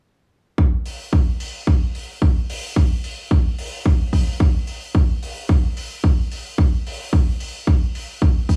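A dry, close-sounding small-room recording opens this sensual, cosmic nu-disco excerpt at 110 BPM in 4/4 with a 55% swing on the 16ths, where a punchy, layered, overdriven electronic kick drum, re-recorded in a large room and placed up front, enters at 0.6 s and is joined at 0.9 s by a mid-forward acoustic hi-hat with its own small-room character.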